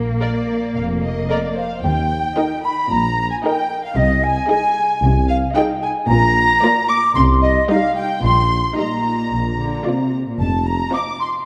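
Quirky and mischievous, this short excerpt from a longer piece is a playful, whimsical cinematic cue in Eb major, moving at 112 BPM in a straight 4/4. Chamber cello and double bass sections open the cue together at 0.0 seconds, bowed with vibrato and sounding distant. A symphonic violin section carries the melody softly in the background while a studio violin section adds an expressive second line with portamento, and a rich, focused viola section fills in the accompaniment. At 1.3 seconds a bell-like celesta with soft felt hammers also takes up the melody, very quiet and ringing, alongside an airy silver concert flute on a tongued second line. A mellow tuba joins the bass at 1.8 seconds, as the harmony moves from Eb through Ab/C, Cm and Eb/Bb before settling on an F5 at 10.4 seconds. The whole ensemble sits in a wet scoring-stage reverb with a dark, warm production.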